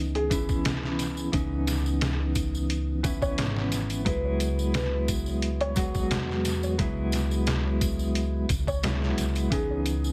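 Dark and cinematic, this trip hop excerpt moves at 88 BPM in C# minor, with a clean, fingered electric guitar treated with tremolo and tape echo and a woody pizzicato upright bass underpinning the C#m9 to F#9sus4/C# changes. A felt-muted upright piano carries a soft, intimate melody with audible action noise and its own tape echo, entering at 0.2 seconds alongside a gritty, pitched-down sampler-style kit with a thumpy kick, medium-tuned snare and hi-hat in a small room. A bright, dry tambourine joins at 0.3 seconds, and the whole mix carries a heavily compressed, radio-like sound.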